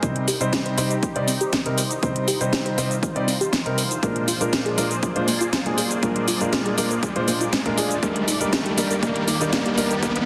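A straight 4/4 pulse at 120 BPM drives this bittersweet, emotional progressive house build-up in C minor, cut from a longer piece, where up-front grand piano stabs with audible action noise, low-pass filtering, delay and sidechain pumping sit over a punchy tape-warm kick, cracking snare with metallic hats and shaker, a barely audible round analog bass, a very quiet soft pluck arpeggio, and a lush detuned pad in the background with chorus, phaser and pumping, while a riser enters at 3.1 seconds as the chords move from Cm to Bb7 to Ebmaj7 under a dense, heavily limited master.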